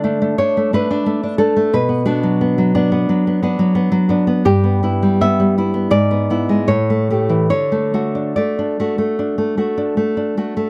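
A romantic piece for solo classical guitar, this short passage of about 10.7 seconds carries a nostalgic, warm mood in D major. The tempo drifts between 71 and 92 BPM in 4/4, with a rubato feel that lets the phrasing breathe freely. A fingerpicked nylon-string guitar is the only voice, sitting up front with a dark tone that spans from G2 up to E5. Close, detailed microphones and very little reverb keep the sound dry and immediate, so the finger squeak on the strings comes through clearly. The harmony moves from D5 through Bm, Em/G, E7/G# and A7 before settling back on D at 7.5 seconds, and the passage is cut from a longer piece.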